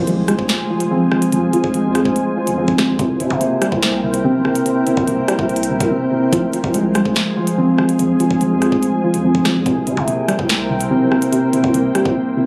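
A faint electronic impact opens this ominous, menacing drill cut from a longer piece, ending by 1.3 seconds as a glassy FM pad, muted felt-like synth keys, a warbly dusty pluck and a growling 808-style bass all sound from the start. The half-time groove at 144 BPM in 4/4 sits in F harmonic minor, moving between Fm and C7, with a drill drum kit of knocking kick, sharp snare, crisp hats, rim clicks and finger snaps. The keys are the most forward part, playing soft, intimate, vintage-toned arpeggios with chorus and delay, while the lo-fi, detuned pluck adds dark, wave-folded accompaniment colored by a filter sweep and chorus. Above them the ethereal pad holds slow-blooming sustained chords with ensemble chorus and its own reverb, and the buzzy 808 anchors the low end. A brief silent gap from 5.9 to 6.3 seconds splits the passage, and a short break closes it at 12.2 seconds. The whole has a light club reverb and the slightly roomy character of a phone recording.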